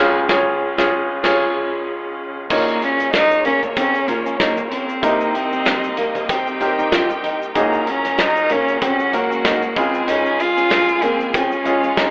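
A lightly swung sixteenth-note feel in 4/4 carries this anthemic, piano-driven pop fragment from a longer piece. It opens with a full-band accent: the polished, up-front baby grand and a lush, intense string section holding sustained chords in the background, joined at 0.3 s by a loose indie drum kit with a punchy kick, fat snare, dark cymbals and a pumping room sound. At 2.5 s, an intimate solo cello takes the melody with a soft attack, airy sul tasto bowing and light vibrato. With it come a focused, distant violin section on a second line, a full-bodied fingerpicked jumbo steel-string guitar riff, and a grainy tube shaker tucked close and dry behind the band. The harmony moves from Db through Bbm, Cm7 and Gbadd9/Bb before returning to Db. The whole mix has a rough home-demo quality, narrowed to a telephone-like tone and touched with light reverb, giving the warm mood a lo-fi edge.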